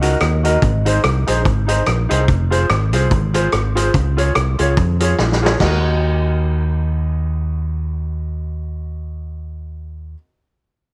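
Ska in Eb dorian at a swung 144 BPM, mischievous and energetic, this fragment pairs woody upright piano stabs with a round, dark fingered electric bass up front and a mellow, clean electric guitar with spring reverb in the background, while a gritty, saturated vintage drum kit with tight kick and dark cymbals plays a fill at 5.2 s and drops out at 5.7 s as the chords return to Ebm.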